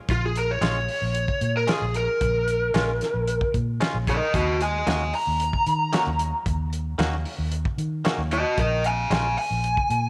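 An overdriven lead guitar through a small cranked amp plays a brooding, mournful soul blues solo from the start, over a dark, round, foam-muted fingered bass and an acoustic soul drum kit with a fat snare in a pumping, tight booth, while a bright, twangy clean guitar adds compressed stabs from 0.6 to 9.3 seconds as the chords move from Bbm7 to Ebm7 to Bb7(no3) in this cut from a longer piece.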